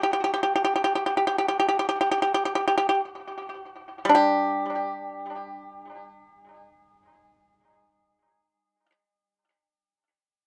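A solo pipa sits up front in this short excerpt of Chinese traditional music, its acoustic tone close and percussive under fingerpicks, with a touch of tape echo trailing its notes. The mood is flowing and serene, carried in a free, rubato feel over a 4/4 frame. The playing holds to the octave from G3 to G4, and the pace slows down across the first 4.2 seconds before the music moves into a new section. The pipa sounds until 8.9 seconds, set in a moderate studio reverb that frames its otherwise dry attack. The production leans dark overall, giving the lone plucked strings a shadowed, intimate setting.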